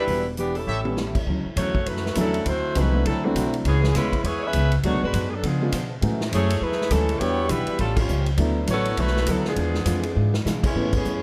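Swinging at 202 BPM in 4/4, this joyful big band cut opens with a brief burst of bright trumpet stabs that stop at 0.8 s, while an up-front saxophone section carries the melody with light vibrato over a woody pizzicato upright bass and a big-room drum kit with a punchy kick, fills and ride and hi-hat. A clear baby grand piano with short sustain and a dark, full-bodied picked acoustic guitar, complete with finger squeak and set in the background, fill out the accompaniment as the chords move from Em7 and A7 into a Dmaj9 passage that travels through C#7b9, F#m9 and A7alt. Band accents punctuate the close at 10.6 and 10.9 s, all under light reverb in what sounds like part of a longer piece.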